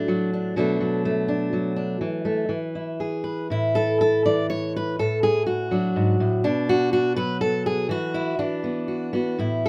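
A fingerpicked steel-string acoustic guitar plays alone in this gentle, hopeful folk excerpt, its dark tone and fresh strings placed up front with an auditorium-sized body and light reverb. The rubato performance moves around 123 BPM in 3/4, tuned slightly low to A4 = 438 Hz, ranging from G#2 to D5 through chords like D/A, Bm7 and E. A second passage begins at 3.5 seconds, briefly drops its harmony at 7.9 seconds, and settles on Esus2.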